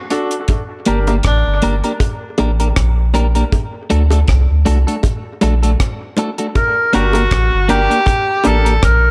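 A roomy tenor saxophone with light vibrato and scooped notes carries the melody through dub echo in this hypnotic, deep dub reggae excerpt at 79 BPM in G harmonic minor, sounding at 0.0 s and returning at 6.6 s, over a dry, tight acoustic drum kit of kick, hi-hat and rim click, a round, soft sub bass from 0.9 s, a clean, compressed electric guitar steeped in spring reverb and echo, background stabs of clear grand piano with audible action noise, and high-tuned bongos struck with hard hands, across chords of Gm, D and Gm.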